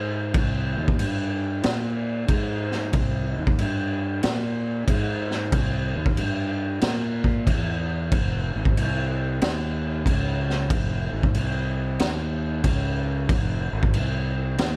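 Brooding, sludgy stoner and doom metal in C phrygian at 93 BPM with a swung 4/4 feel, cut from a longer piece, where a growly, overdriven fuzz bass opens alone, ranging from F1 to Bb2, before a raw, gritty garage drum kit with a punchy kick, high-tuned snare and crash cymbal joins at 0.3 seconds, both parts up front in a dark, dry production.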